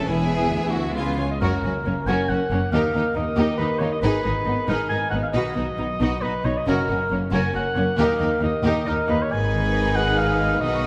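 In a straight 3/4 at 137 BPM in F# major, this heroic, triumphant cinematic excerpt sets a lush, vibrato-rich symphonic violin melody and a focused, distant second violin line over a clear, intense viola accompaniment, ringing fingerpicked harp arpeggios and smooth, even cello and double bass, while a dark French horn section holds chords only until 1.2 s, an up-front cor anglais enters with a roomy solo line at 1.0 s, and a wet scoring-stage reverb carries the progression through F#, D#, G#m and B.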